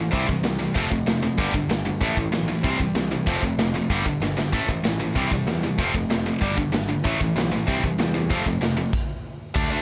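Punk rock cut from a longer piece, urgent and aggressive, with a tight, bright distorted guitar up front alongside a big acoustic drum kit with a punchy kick and bright cymbals, an overdriven guitar riffing in the background until 8.9 seconds, and a growly picked bass underneath, all cycling through C, F, G5 and A5 with a drum fill at 4.2 seconds before a sudden stop at 8.9 seconds, in light reverb.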